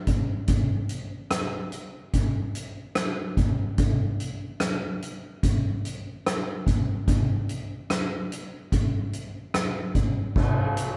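A brooding, cinematic rock excerpt in straight 4/4 opens on an up-front, soft-mallet drum kit alone from 0.1 s, its boomy kick, rim clicks, hi-hat and dark crash cymbal heard acoustically in a natural hall ambience with light reverb, as if the band were playing live in one room.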